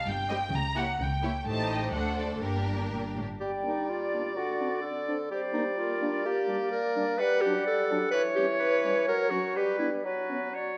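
A straight 2/4 pulse at 127 BPM drives this playful, sneaky cinematic cue in G minor, cut from a longer piece. It opens on strings: violins carry a lush, up-front melody with portamento over a second violin line, viola accompaniment, and a bowed bass of smooth cellos and double basses. By 3.4 seconds the strings have finished and the woodwinds take over with a present clarinet, a clear oboe, a hollow silver flute in the background and a mellow bassoon, while a tight French horn section holds sustained chords from 3.6 seconds, all set in a moderate scoring-stage reverb that suits the quirky, whimsical mood.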